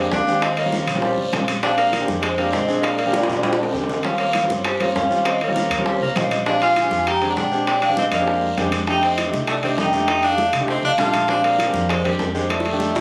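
A straight 4/4 pulse at 199 BPM sets this sunny, danceable Afro-Cuban jazz excerpt in motion. Ringing metal-shell timbales lead the percussion, while round, low-tuned bongos played with soft hands and medium-tuned congas sit close and dry in the background, and a raspy guiro sounds distant in a larger space. Drum fills break in around 3.1, 8.4 and 12.5 seconds. Over this, a mellow vibraphone with soft mallets and a fast motor vibrato carries the melody in Bb mixolydian, joined by a bright, punchy tenor saxophone that sits up front with forceful jazz vibrato as a second line. A natural-sounding baby grand piano with short sustain comps through Eb13, Bb13 and F13 chords, and a woody pizzicato upright bass anchors the low end. Captured on a phone in the room with a club-like ambience, the whole band is bathed in a wet, short studio reverb.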